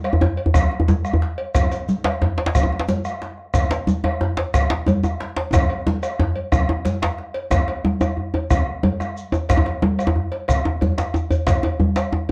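Earthy and powerful, this short cut from a longer West African drum ensemble piece rolls at 121 BPM in a straight 12/8, with a deep, dark bombo up front, one close, hard-handed djembe in the foreground and a second djembe tucked into the background, ringing congas, a grainy, mellow shekere and a metallic, saturated cowbell, all heard through moderate studio reverb and the warbly pitch drift of worn cassette tape, with a drum fill from 5.5 to 7.5 seconds before the opening section returns.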